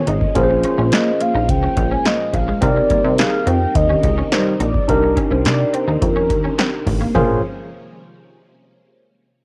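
A lightly reverberant home cassette recording with a soft digital ambience carries this danceable, slick early-eighties boogie funk excerpt. An up-front, dry electro drum machine with deep kick, punchy snare, metallic hats, handclaps and toms drives a plucky, fast-attack analog bass with a ring-modulated, evolving edge, while a round, warbling horn-like synth lead with vibrato and chorus sings the melody over a bright, barky tine electric piano played through a combo amp. A twangy, slightly broken-up guitar plays a riff while a swirling, phased string machine's sustained chords sit in the background, and at 2.9 s a dark, detuned synth brass second line with analog delay joins in the background as the harmony moves between Bbm9 and Cm9.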